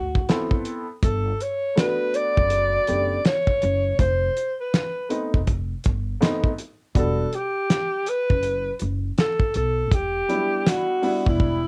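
Nocturnal and smoky, this 11.7-second cut from a longer jazz-hop piece in E minor sits at 81 BPM with a swung sixteenth-note feel, moving through D13, Gmaj9, F7#11 and Em7. A breathy alto saxophone carries the melody with vibrato and scooped notes over a thumpy, woody pizzicato upright bass and a dark, worn upright piano whose slightly detuned strings, long sustain and audible action noise add intimacy. A cloth-damped, thuddy drum kit with a fat snare and tight kick drives the groove through a cassette-tape haze on the drums and piano, and a drum fill arrives at 11.4 seconds in a lightly reverberant home-recorded space.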